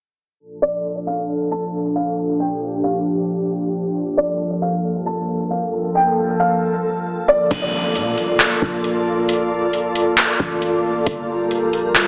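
A glassy FM pad opens this dreamy, blissful cloud-rap excerpt, its ethereal chords softened by ensemble chorus and reverb and pumping against a sidechain, while a felt-muted upright piano carries an intimate melody through a low-pass filter and digital delay over a filter sweep. At 7.5 seconds the piano drops out and a booming analog drum machine enters in a half-time feel, its deep kick, metallic hats, handclaps and crash sounding as if re-recorded in a large room, alongside a mellow, boomy 808-style bass and a distant electronic impact. The whole mix has a heavily compressed, small-speaker radio character with light digital ambience.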